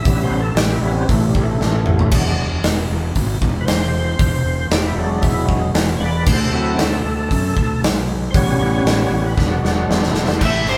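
A thick, overdriven tonewheel organ, its key click and third-harmonic percussion spinning through a slow rotary speaker with chorus vibrato, carries this gritty, swaggering blues rock and southern rock passage at 116 BPM, holding sustained chords over a shuffle-free straight 4/4 as the harmony moves from A7 through E7 and D7. Beneath it, a growly fuzz bass and a big, up-front acoustic drum kit with a punchy kick and bright cymbals drive the band, which plays live in one large room with moderate reverb, and the drums break into fills at 1.6 and 9.4 seconds. At 10.4 seconds a bright, double-tracked distorted guitar riff kicks in, followed at once by an overdriven slide guitar melody just as this clip, cut from a longer piece, ends.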